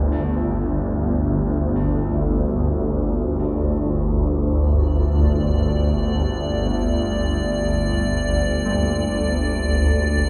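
A swarming, detuned, wave-folded drone sits up front in this dark, unsettling dark ambient fragment in free time, holding a G5 chord low while bronze carillon bells ring arpeggios through tape echo in the background, and an icy, crystalline glass pad with chorus enters at 5.2 s, the whole soaked in a cavernous cathedral reverb.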